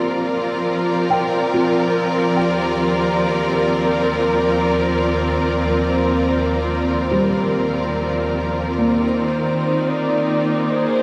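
In a straight 4/4 at 72 BPM, this ambient passage, cut from a longer piece, moves unhurried with a serene, melancholic mood. Up front, a lush bowed string section holds sustained chords with smooth vibrato, moving from Gm7 to Eb6 and reaching Abadd9 at 9.0 seconds. Beneath it, a felt-muted upright piano plays soft, dark arpeggios with short sustain and a touch of delay, sitting intimately in the background. A velvety synth lead of detuned sawtooth and triangle tones carries the melody, fading in across the full 11.0 seconds with chorus, delay and gentle vibrato. A shimmering reverb with a long 6.3-second tail bathes the whole mix in a glowing, weightless space.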